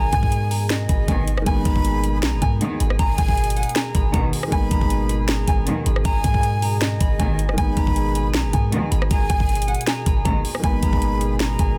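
A half-time trap groove drives this brooding, melancholic hip hop excerpt, with an up-front electronic kit of knocking kick, sharp snare, rim click and metallic hats over a deep, boomy, sine-like 808 bass. A fingerpicked nylon-string guitar carries the melody alongside a breathy, expressive jazz flute with vibrato, both touched with tape echo, while a mellow, intimate grand piano with audible action noise and a hollow, airy chorused pad fill in the harmony. At 1.1 seconds a lush, woody string section joins with dark bowed stabs trailed by tape echo, all within a dense, heavily limited modern mix with studio reverb.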